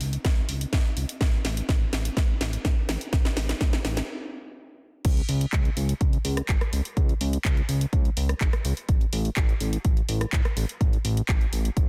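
Dreamy and bittersweet, this progressive house excerpt moves at 125 BPM in a straight 4/4, tuned slightly flat to A4 = 436 Hz. It opens with a build-up where a house drum kit of crash, handclaps, hi-hat, rim click and cracking snare plays a fill to 4.1 seconds. A brief stop follows before the drop at 5.0 seconds. Up front, a punchy electronic kick sits beside a fat, detuned sawtooth bass with tube saturation and sidechain pumping, all set in light digital reverb under a dense, heavily limited modern master.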